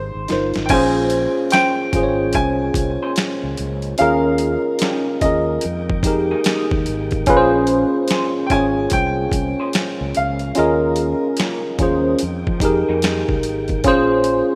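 An up-front tine electric piano with analog chorus carries the chords through this late-night, soulful neo-soul and R&B excerpt at 73 BPM in Bb dorian, while a clear baby grand piano plays the melody, a fretless electric bass holds the low end, a gritty, pitched-down boom bap drum kit with a thumpy kick, finger snaps and overdrive opens with a fill, a tonewheel organ on fast rotary speaker sustains chords in the background, and a slightly broken-up, lo-fi electric guitar with lush chorus adds a second line from 1.5 seconds, all in a lush hall reverb with a rough home-demo feel.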